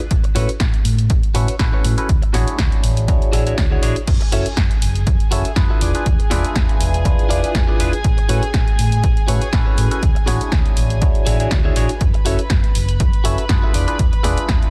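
A dense, heavily limited and nearly dry mix with lossy artefacts and a filter sweep running through it carries this funky, nostalgic filtered disco house excerpt, where an up-front punchy electronic kick and an analog drum machine's snare, pumping hi-hats and crashes play alongside a round, tube-saturated hollow-body fingered bass, a barky, lightly overdriven tine electric piano with phaser, and a bright, clean direct guitar riff roughened by 12-bit sampler grit, before a distant, reedy violin section with gut-string tone enters at 4.1 s with sustained chords.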